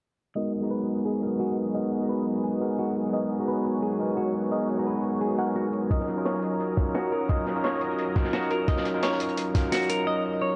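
Liquid drum and bass at 173 BPM in G# minor, this melancholic, rolling excerpt moves from G#m7 to D#m7 at 5.9 seconds under a dark production with a moderate, lush hall reverb. Up front, an overdriven tine electric piano carries the accompaniment with a bright, gritty bite through a combo amp and tape echo, while a thick, detuned sawtooth-and-square unison pad holds slow-attack sustained chords, shimmering with chorus and pumping against the sidechain. A clean, hollow-bodied semi-hollow electric guitar plays fingered arpeggios, its tone dusky and filtered, with warbly pitch drift and delay. A compressed, sampler-style electronic hi-hat sits low-passed in the background from the start, and filter sweeps run across the drums, the guitar and the whole piece throughout. At 5.9 seconds a saturated, crunchy breakbeat kit arrives with a medium-tuned snare and rolled-off top, joined by a thumpy, up-front electronic kick.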